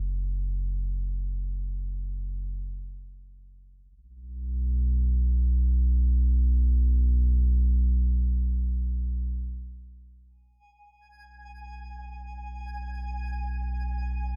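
Warm and peaceful, this free-time ambient excerpt opens on a deep, rumbling drone in the bass, dark and ominous, sitting up front with slow attacks, long sustains and its own built-in reverb, tuned to A4 = 438 Hz. At 10.6 seconds, just after the harmony settles onto G#m/B, a quiet, twinkling granular texture joins high above, sparkling and bright with an octave-up shimmer. The overall sound is dry and close, with both parts carrying on until the cut at 14.4 seconds.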